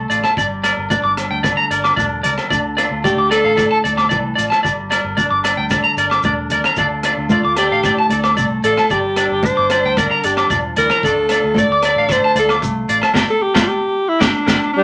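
This excerpt from a longer highlife guitar band piece opens on a clean, compressed semi-hollow guitar playing accompaniment over a round, foam-muted fingered bass, with the rest of the band arriving almost at once. A bright, twangy guitar at the edge of break-up picks arpeggios up front, while a gritty, saturated drum kit with a high-tuned snare, tight kick, hi-hat and rim click sits under a dark, rolled-off top. Ringing congas, distant agogo bells and a grainy shekere fill out the percussion from the background. The alto saxophone offers a brief phrase at 3.0 seconds, then returns at 7.3 seconds for a punchy, forceful jazz-style solo with vibrato as the chords alternate between G minor and D minor. A band accent and a drum fill close the passage, and a subtone tenor saxophone sounds a single note at 14.8 seconds, all within a moderate club reverb that suits the warm, bittersweet mood.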